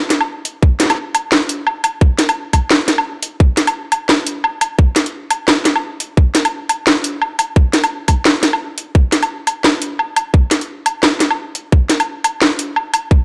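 Dark and tense, this drum and bass excerpt runs at 173 BPM in 4/4 with a half-time feel and a 59% swing on the sixteenths. A layered, produced drum kit sits up front from 0.1 s, its cracking snare, metallic hi-hats and woodblock carrying an electronic edge, while a tight electronic kick joins at 0.6 s and holds through to the end at 13.2 s. Both parts have the close character of a small room, set inside a moderate echo-chamber reverb and a dusky, rounded production.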